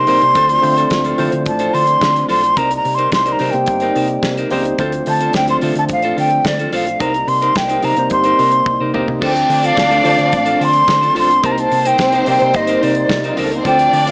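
Heard through a small speaker with light reverb and a touch of studio ambience, this short cut from a longer disco track moves at a driving, danceable 108 BPM in straight 4/4, in C dorian, swaying between Dm7 and Cm7. A breathy metal jazz flute sits up front with a soft attack, vibrato, lifted highs and a slightly unsteady tone, carrying a solo melody through the opening stretch. Underneath, a picked, twangy clean electric guitar with spring reverb and a worn, slightly out-of-tune tine electric piano, lightly overdriven through its built-in speakers, fill in the accompaniment. A mellow French horn section holds classical-style chords in the background, while a dark, round and punchy hollow-body short-scale bass, fingered and amped, anchors the low end. The damped 70s drum kit, dry and acoustic with a fat snare, tight kick and gated reverb, kicks in almost at once and plays a fill from 8.7 to 9.2 seconds. 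At 9.2 seconds a lush, warm studio violin section joins with a bowed, expressive second line full of vibrato.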